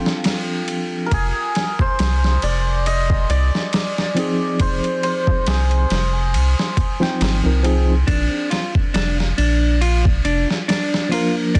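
A round, deep analog bass sits up front in this dark, brooding trip hop excerpt, entering at 1.1 seconds with a nasal, sustained tone. The slow 69 BPM groove in 4/4 carries a light swing on the sixteenths, driven by a dusty, sampler-style drum kit with a thumpy kick, medium-tuned snare and ride cymbal, overdriven and re-recorded in a small room. A worn, slightly out-of-tune tine electric piano plays the accompaniment through a combo amp, colored by harmonic tremolo and tape echo, while a bright, shimmering hammered dulcimer carries the melody with 12-bit sampler grit and tape echo until 8.5 seconds. At 8.1 seconds, as the harmony moves from Dm7 and Fm7 to Bb, a dark, picked clean electric guitar takes up arpeggios with the same grit and echo. The mix is dense and heavily limited, set in digital ambience with a layer of vinyl crackle.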